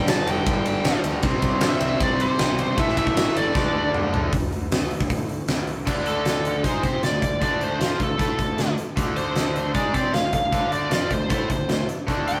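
An up-front arena drum kit with a punchy kick, fat snare and bright cymbals drives this menacing, heavy hard rock excerpt at 155 BPM in D minor, with a drum fill at 3.6 s. A biting lead guitar carries the melody through overdrive and analog delay, while two picked, bright overdriven guitars play the riff, the crunchier one sitting in the background, over a fuzzy, punchy picked electric bass. The band drops its chords at 4.3 s before settling on D minor at 5.9 s, all captured in a rough rehearsal-room recording with moderate stone-room reverb.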